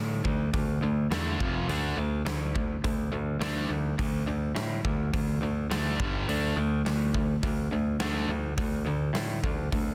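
A growly, punchy picked electric bass sits up front in this anthemic, swaggering hard rock excerpt, joined at 0.2 s by a big, natural-sounding acoustic drum kit with a punchy kick, hi-hat and a medium-tuned snare carrying soft clipping. Behind them, a bright, cranked stack guitar and a warm, overdriven semi-hollow guitar play the riff over D5, F5 and G5 power chords. Small room ambience and a dense, heavily limited modern master frame the sound.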